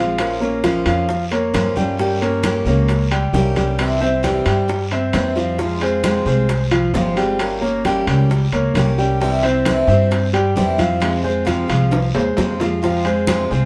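Recorded with a band playing live in one room under moderate studio reverb, this nostalgic, warm Cuban son and guajira excerpt in F harmonic minor moves at 133 BPM, featuring an intimate, vintage concert grand piano whose arpeggios sit up front with audible action noise, alongside a woody, thumpy gut-string upright bass played pizzicato, a bright, freshly strung picked steel-string acoustic guitar in accompaniment, very quiet thick-skinned congas and round, low-tuned bongos struck with hard hands, ringing metal-shell timbales and a raspy guiro, with a drum fill from 11.9 to 12.8 seconds.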